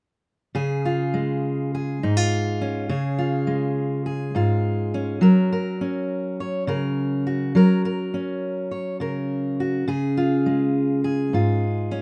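Folk piece in Db major at 103 BPM in a straight 4/4, carrying a nostalgic, hopeful mood. A fingerpicked steel-string dreadnought acoustic guitar plays alone and up front from 0.5 to 12.0 seconds, its bright, full-bodied tone spanning Ab2 to Db5 over chords moving from Db to Gb at 5.2 seconds and back to Db at 9.9 seconds. Light reverb gives the guitar a gentle sense of space in this short passage cut from a longer piece.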